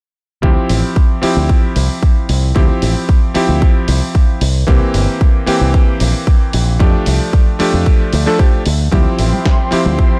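A dark, dry production frames this short nu-disco excerpt in D minor at 113 BPM, where a punchy electronic kick and an up-front, envelope-filtered fingered bass drive a groovy, sensual pulse under a clangy, vintage electric grand piano through low-pass filter and delay, with a gritty, tape-warm sampler kit's hi-hat and snare tucked low, while a lush, detuned sawtooth pad with chorus and sidechain pumping and distant, band-limited congas arrive at 8.9 s as the chords move from Dm11 through C7 and F69 back to Dm11.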